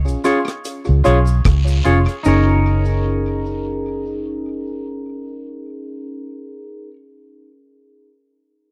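A round, foam-muted fingered electric bass opens this sweet, smooth lovers rock reggae excerpt at a swung 75 BPM in F# major, quickly joined by a deep, dry reggae kit of tight kick, hi-hat and rim click and a background cabasa and guiro, both touched with tape echo, while a glassy, bell-like FM electric piano treated with chorus, phaser and tape echo and a twangy, scooped electric guitar playing stabs through spring reverb carry on as the harmony moves from C# to F#6 at 2.2 seconds, where the kit stops, all in a close, dry 1970s-style studio sound.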